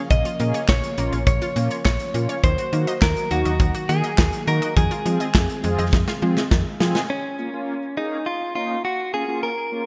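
Synth-pop with a melancholic yet driving character, this excerpt from a longer piece moves in a straight four-beat pulse over a minor chord cycle of Bbm, Ebm and Fm7 before returning to Bbm. Up front, a clean, direct-recorded electric guitar plays the picked, compressed melody through a digital delay, while a punchy acoustic studio kit of kick, medium-tuned snare, hi-hat and handclaps drives beneath it alongside a snappy, metallic slap-like FM bass. Mellow, detuned sawtooth synth brass with chorus, vibrato and a filter sweep adds round accompaniment, and in the background a bright analog pluck ripples through arpeggios with chorus and delay. A very quiet, vintage organ-like string ensemble holds soft sustained chords underneath. After a drum fill at 5.9 seconds, the drums, bass, pluck and organ-strings drop away at around 7.1 seconds, leaving the guitar and synth brass to carry on in a glossy 1980s-style digital production bathed in lush hall reverb.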